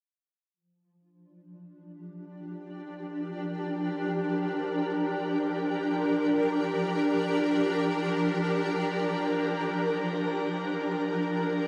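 A cassette-tape haze washed in a wet shimmer reverb carries this weightless, peaceful ambient fragment in free time, where a lone, bright shimmering pad, up front with chorus and delay, enters at 2.0 seconds and sustains a Bb6/F chord between F3 and Bb4, its detuned, octave-up glow evolving ethereally until 11.7 seconds.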